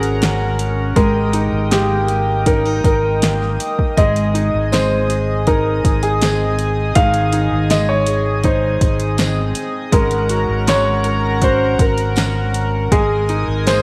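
A straight 4/4 groove from an electronic, produced R&B drum kit, with a soft kick, fat snare and metallic hats sitting up front, drives this hopeful, heartfelt pop ballad, joined by a dark, round, amped fingered electric bass. A dark, mellow grand piano carries the melody over a clear, polished second grand piano's accompaniment, while a shimmering, retro pulse-width pad with chorus sustains bright chords and a fingerpicked steel-string acoustic guitar plays arpeggios in the background. A jingly, distant tambourine enters at 4.7 s, and the harmony moves through Gb/Ab, Eb/Ab and Ab, returns to Gb/Ab, and closes on Absus2, all set in light small-room reverb.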